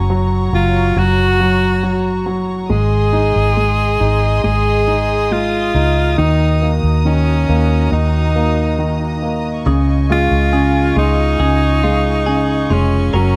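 An edgy, forceful alto saxophone carries an emotional, hopeful pop melody with vibrato from the opening, over clear, polished grand piano accompaniment, a round, punchy foam-muted electric bass up front and softly bowed, dark sul tasto strings held close behind, before a clean, compressed electric guitar with phaser enters with picked arpeggios at 9.7 seconds in this piece cut from a longer work, all set in light studio reverb.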